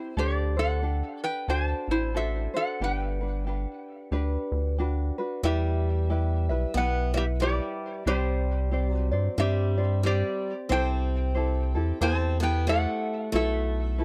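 A relaxed, languid Hawaiian excerpt in swung 4/4 opens with a metallic, nasal resonator slide guitar up front, its fingerpicked melody trailed by tape echo over a light tenor ukulele and a rubbery, hollow square bass that enters at 0.2 s, then at 5.4 s the harmony turns to E minor as a bright, boxy picked acoustic guitar joins with a swinging second line and audible finger squeak, all in a dry, close 1970s-style studio sound.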